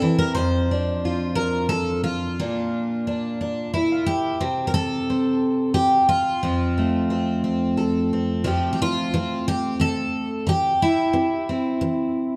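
Nostalgic and peaceful, this short folk passage, cut from a longer piece, features a solo fingerstyle twelve-string acoustic guitar in F major. It moves at an unhurried 89 BPM in a straight 3/4 lilt, with the picked guitar ranging from F2 up to C5. The jumbo-bodied instrument sits up front with a shimmering, octave-doubled ring and a full-bodied tone. Its harmony passes from F5 through Bb to a brief chordless moment at 4.4 seconds, then settles back on F. A new section opens at 8.5 seconds with Fadd9 before reaching C/E. A moderate scoring-stage reverb with a 2.1-second tail wraps the guitar in a dark, warm production.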